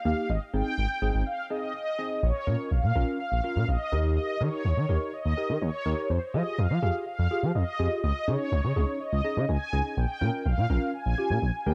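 Synth-pop at 124 BPM in a straight 4/4, this short excerpt sits in Bb dorian with a nocturnal, cool mood. A mellow synth brass carries the melody between C5 and Ab5, its detuned sawtooth tone round and dark, with a filter sweep, vibrato, chorus and tape echo placing it up front. Beneath it, a clean tine electric piano plays accompaniment through a combo amp with a phaser. A smooth, gliding synth bass, sawtooth and triangle with a wave-folded edge, runs from Ab1 to F3 with portamento and vibrato, and is the loudest part in the mix. A break falls between 1.3 and 2.2 seconds before the harmony moves through Bbm, Eb, Fmadd9 and Dbsus2 back to Bbm, all under a light reverb.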